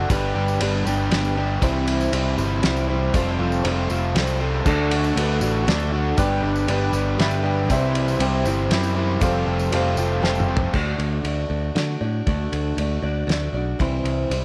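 Light reverb and small-room ambience frame this hopeful, nostalgic slice of folk rock and heartland rock, moving at 118 BPM in 3/4 with a straight feel over a G, C, Fadd9 and D progression. A picked steel-string acoustic guitar and a growly, punchy electric bass carry the whole cut. A dark, overdriven, double-tracked electric guitar plays the riff up front until 10.7 seconds, a cloth-damped, thuddy drum kit with a fat snare and dark cymbals keeps time, and a jingly tambourine sits in the background. A brilliant, woody upright piano enters at 4.7 seconds and adds a fill, and a drum fill leads into a closing passage on D and C.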